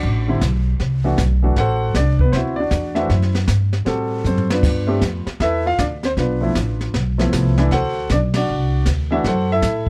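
A grand piano carries the melody up front with a natural, warm tone, moving between D3 and F#5 over a relaxed, easy-going groove in D mixolydian. This short swinging jazz piano trio passage runs at 156 BPM in 4/4, with a gentle swing on the eighth notes. Beneath it, a woody, thumpy pizzicato upright bass on steel strings sits close and forward, holding down the low end between A1 and A2. The drummer plays brushes on a dark-sounding kit with smooth cymbals, a high-tuned snare and a boomy kick, adding a short fill from 4.2 to 4.6 seconds before the trio hits a shared accent at 8.3 seconds. The harmony moves from D13 to G13 and back to D13, then lands on F#m7b5. The recording is dry and intimate, with close, detailed microphones that bring out the acoustic character of each instrument.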